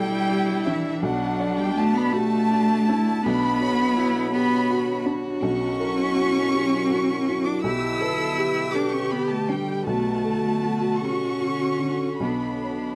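A bowed chamber violin section carries the melody from the first moment, its expressive vibrato trailed by tape echo, over an up-front, bright cello second line, a felt-muted upright piano and a focused solo viola, with a warbling, lo-fi pad of detuned chorused tones slipping into the background at 0.3 seconds. This melancholic, reflective neoclassical fragment moves in a rubato 6/8 at 54 BPM in B minor, circling through chords such as G/B, Bmadd9 and F#7/B. The dry, close studio sound keeps the mellow piano intimate and the strings rich, while the pad's built-in reverb adds a nostalgic haze.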